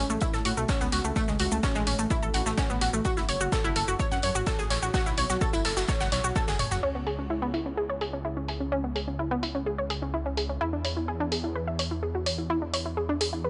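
Softly lit by light reverb and studio ambience, with a rolled-off top end, this hypnotic, cinematic slice of melodic techno in C# minor moves at 127 BPM in a straight 4/4 over A6, F#m7, C#m7 and E7 chords. An up-front, round analog pluck with detuned sawtooth tone carries the arpeggios through chorus, cassette tape colour, tape echo and sidechain pumping, while a menacing, saturated detuned saw bass swells and evolves underneath with the same pumping. A punchy electronic kick and a gated 80s kit with a medium-tuned snare, tambourine and hats in a bright stone room drive the first half until a drum fill at 6.5 seconds, and a tape-warm house kit with low-passed crash, hats, shaker and toms carries on into the second section.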